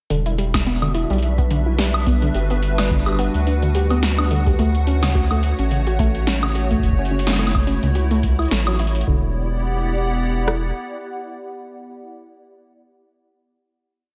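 IDM at 107 BPM in E dorian, eerie and glitchy, built on a swung groove where an overdriven analog drum machine sets a broken kick and rim pattern against an ever-changing, glitched beat of metallic hats, punchy snare and high woodblock touched with digital delay. A round, dark bass with long gliding notes sits up front beneath a hollow, flute-like pad whose slowly shifting chords carry ensemble chorus and sidechain pumping, while a dusty, ring-modulated pluck runs a 5-step arpeggio loop that drifts against the bar through chorus and delay. Everything blooms in a lush hall reverb with a big arena sound, moving from Em9 through Gmaj7, Dmaj7 and F#m7 before the pad holds a final Em9 from 9.1 seconds, with bass, kick and rim still sounding beneath it.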